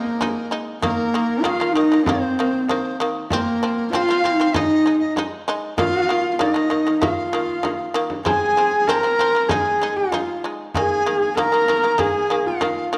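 Vast and windswept, this short cut from a longer Mongolian folk piece moves at a straight 97 BPM in 4/4, with a dark, husky horsehead fiddle carrying the melody up front with vibrato, portamento and slapback echo, while a bright, buzzing shamisen plucks arpeggios, a distant, airy dizi adds a mellow second line, and a frame drum played with soft hands keeps time, all set in a moderate echo chamber reverb.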